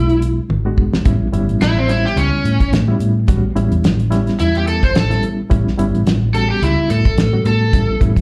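Rollicking and swaggering, this short cut from a longer straight-eighth soul blues struts along at 108 BPM in A mixolydian, captured live through a club PA with light reverb and some lossy grit. A bright, overdriven slide guitar carries the melody with slapback echo and launches into a solo at 1.1 seconds, just after a drum fill from 0.5 seconds on a dry, dark 70s kit with a fat snare and tight kick. Underneath, a reedy, worn, slightly out-of-tune electric piano adds tremolo and slapback echo, while a round, foam-muted vintage bass sits up front as the harmony moves from E9 to A9.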